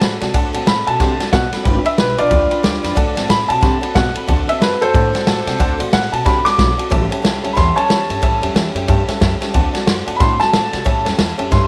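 A light studio reverb gives this rowdy, rollicking rockabilly excerpt a natural space, cut from a longer piece and driving along at 182 BPM in 4/4 with a swung eighth-note feel in D mixolydian. Up front sits a vintage drum kit with a punchy kick, medium-tuned snare and ride cymbal, its rolled-off top keeping the small-room sound round and acoustic. A woody, thumpy upright bass with gut strings plucks a dark low end beneath a bright, full-bodied picked steel-string dreadnought guitar and a detuned, jangly honky-tonk upright piano with short sustain tucked back in the mix. From 0.7 seconds a brilliant, open upright piano carries the melody, its long sustain doubled by a slapback echo. The harmony moves through D7, G7 and A7 in a dominant-seventh progression.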